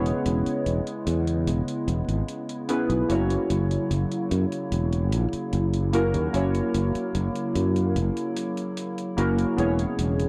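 In a straight 4/4, an electronic hi-hat sits far back in the mix, its sampler-style tick carrying a tape-warm, small-room tone from 0.1 seconds onward. This faded, dreamy vaporwave fragment, cut from a longer piece, drifts slowly over chords moving from E6 to F#7 at 3.1 seconds and back to E6 at 9.6 seconds. Up front, warbling lo-fi synth keys built from square and sawtooth tones play the accompaniment with a fast attack and decaying notes, a filter sweep, lush chorus and analog delay giving them a nostalgic, mellow glow. Beneath them a detuned, wave-folded tape-like pad holds sustained chords with a slow attack and long release, bathed in chorus and its own reverb. A fretless electric bass, bright, growly and direct, sustains the low end prominently. The overall sound is a dry, gritty hardware recording touched by light digital ambience.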